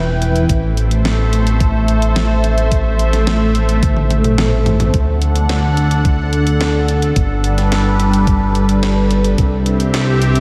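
Synthwave at 108 BPM in straight 4/4, this short cut from a longer piece feels driving and nostalgic, its tuning sitting slightly below standard pitch. A swirling, detuned sawtooth pad holds sustained chords from the very start, its slow attack and long release shaped by phaser, chorus and sidechain pumping, and it sits up front alongside a glossy, nasal synth bass built from pulse and sawtooth tones with pulse-width modulation and chorus. A clean 12-bit drum machine supplies hi-hat, a fat snare and toms through high-pass filtering, tape-tinged and re-recorded in a small room, with a drum fill from 3.8 to 4.9 seconds. A thumpy, sampler-style electronic kick runs from 0.5 to 9.5 seconds. The harmony moves from A minor to D at 4.9 seconds as the second section opens, then through Gadd9 at 7.2 seconds to C at 9.4 seconds. A cathedral reverb with a 5.8-second decay soaks the mix in a dreamy haze.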